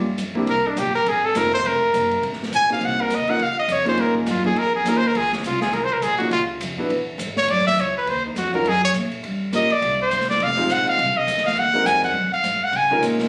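Captured on a phone in a club with moderate reverb and compression, this sophisticated, swinging excerpt of small-group bop at 206 BPM in Db major features a clear, punchy trumpet with light vibrato soloing up front over a warm concert grand piano with deep bass, a woody pizzicato upright bass, and a dark-toned drum kit with a boomy kick and medium-tuned snare.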